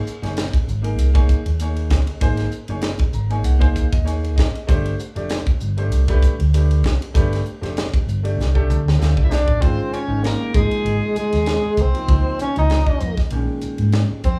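A swung 97 BPM groove in 4/4 drives this funky, soaring electric jazz fusion excerpt, where crisp, airy drums with a high-tuned snare and a round, punchy hollow-body bass sit up front beneath a warm, vintage-toned grand piano that adds fills before a breathy, whispered tenor saxophone with vibrato and scooped notes takes the melody at 9.2 seconds alongside a double-tracked overdriven guitar line, all in a small room with light reverb.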